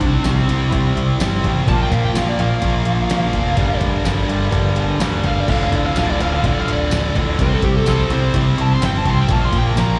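Gritty and brooding, this classic rock passage, cut from a longer piece, moves in a straight 4/4 and is built around a fuzz lead guitar solo that runs its full 10 seconds, its dark, compressed tone carrying slapback and tape echo. Beneath it, an up-front overdriven electric guitar and a very quiet, tight distorted guitar both play a riff, the louder of the two also touched with slapback echo. A growling, overdriven picked bass sits prominently in the mix, and a dusty, sampler-style drum kit with a thumpy kick, fat snare, hi-hat, crash and tambourine adds a tape-warm, compressed groove. In the background, a reedy, worn electric piano, slightly out of tune and lightly overdriven, adds accompaniment through its built-in speakers. The harmony cycles through C, Bb, Gm7 and Dmadd9, and the whole performance sounds like a live gig heard through the venue's PA, with a light recital-hall reverb around it.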